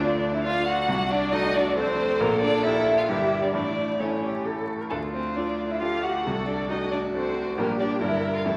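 A quick classical-period movement for piano quartet begins with all four players sounding together, the bright concert grand supplying accompaniment that reaches down into deep bass. Above it, a single bowed violin carries the melody with a warm, distant, vibrato tone, while a second violin adds a focused second line and a close, smooth cello lends its rich voice to another. The mood is stormy and dramatic, moving in three with a flexible rubato feel as the harmony returns to its opening chord at 4.9 seconds. The piano sits up front with a brilliant, natural sound and long sustain, and the ensemble is bathed in a wet recital-hall reverb over a layer of vinyl crackle. Cut from a longer piece, the passage runs about 8.6 seconds.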